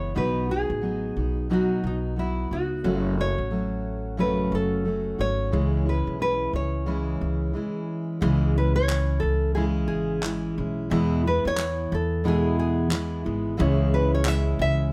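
A lightly reverberant acoustic pop excerpt with a sunny, carefree mood at 89 BPM and a swung sixteenth feel, where a fingerpicked nylon-string guitar carries the melody over full-bodied fingerpicked steel-string guitar and thumpy pizzicato upright bass on gut strings, while a dark, mellow upright piano sits in the background from 2.8 seconds and hollow group handclaps join at 8.9 seconds after a brief break, as the chords move through B, F#m, C#m and E.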